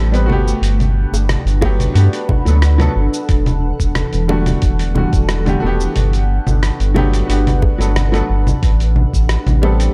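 A deep, round analog bass sits up front in this relaxed, blissful sunset chillout excerpt, moving under Gmaj9, Em11 and Am9 chords. A bright, brilliant baby grand piano with tape echo plays accompaniment beside a shimmering, ethereal pad treated with chorus and phaser. Meanwhile a dusty, gritty sampler-style soul kit of congas, hi-hat, rim click and shaker is joined by tight, high-tuned bongos at 1.1 seconds and a thumpy electronic kick at 1.6 seconds, all set in light digital ambience within a dark, warm production.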